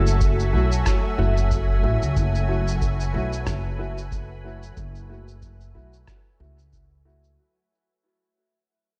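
A woody, up-front pizzicato upright bass anchors this spacious, hazy ambient dub excerpt over a single F#m7 chord, joined by a deep analog kick and a muffled, pitched-down cabasa and rim click whose dub echo trails behind them. A soft, detuned organ-like pad holds sustained chords with ensemble chorus and reverb, while boxy upright piano stabs pass through dub echo and a filter sweep, and a dark, breathy wind-like noise texture drifts in the background from 0.2 seconds. The whole passage fades out across its 7.4 seconds, with the kick dropping away at 6.9 seconds.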